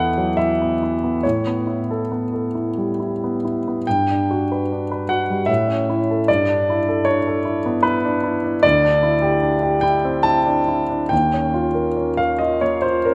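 A warm concert grand piano carries this short impressionist classical excerpt alone, sounding intimate and up front, with audible action noise under its polished tone. The mood is luminous and dreamy, moving in a rubato 3/4 at roughly 68-78 BPM in G lydian, tuned to A4 = 443 Hz. The piano spans D2 to A5, anchoring the sound with deep bass while its long sustain lets colorful harmonies such as Emadd9, Gmaj7 and D9sus4 bloom. Near the end, at 11.1 seconds, an Eb9 chord brings a striking shift of color. A moderate scoring-stage reverb surrounds the instrument, and the passage is cut from a longer piece, running to 13.1 seconds.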